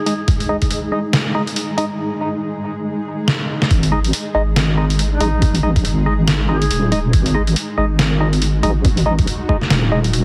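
A deep, dark wobble bass sits up front in this heavy, brooding deep dubstep fragment, its detuned square-and-sine tone thickened by chorus once the drop lands at 3.7 seconds. Before that, a build-up runs filter sweeps over a hollow, nasal organ stab, treated with chorus and dub echo, and a cloudy, evolving granular pad with its own reverb, until a short drum fill tips the track into the drop. The half-time groove swings on the sixteenths, carried by a gritty, pitched-down sampler-style trip hop kit with a medium-tuned snare and hi-hat, plus a thumpy electronic kick that returns in full with the bass. Between 5.1 and 6.9 seconds, a soft, vintage-sounding duduk drifts in the background with scooped, folk-style notes and a dub echo trail. The whole mix carries light reverb and a heavily compressed, radio-like sound, and the passage is cut from a longer piece.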